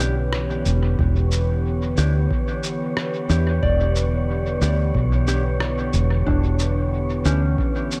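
A meditative, deep slice of ambient dub, cut from a longer piece, floats over a single Em7 chord with a gently swung 4/4 groove. A smooth, detuned sawtooth pad with chorus holds sustained chords while a soft, warbling FM synth bell plays arpeggios in the background through chorus and tape echo. Dark, clean electric guitar stabs trail dub echo, and an up-front, foam-muted fingered electric bass anchors the low end. Muffled, pitched-down shaker and rim click carry dub echo of their own. An airy, breathy wind-like noise texture drifts in at 0.2 seconds, and a tape-warm electronic kick joins at 1.0 seconds in the background, all inside a light-reverb, echo-heavy mix.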